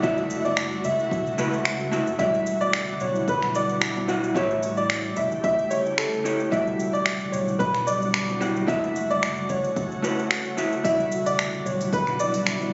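Relaxed and warm, this sunset chillout excerpt in E dorian moves at 111 BPM with a gentle swing on the sixteenths. An intimate, boxy grand piano carries the melody up front with audible action noise and tape echo, while a dark, clean hollow-body jazz guitar accompanies through digital delay. An ethereal, detuned pad holds sustained chords with chorus and gritty sampler texture, and a round fretless bass adds lush chorus underneath. A punchy electronic kick, which drops out at 12.0 s, joins smooth hi-hats, finger snaps and shaker, with soft, low-tuned bongos appearing only in brief bursts. The sound is muffled and roomy, as if captured on a phone.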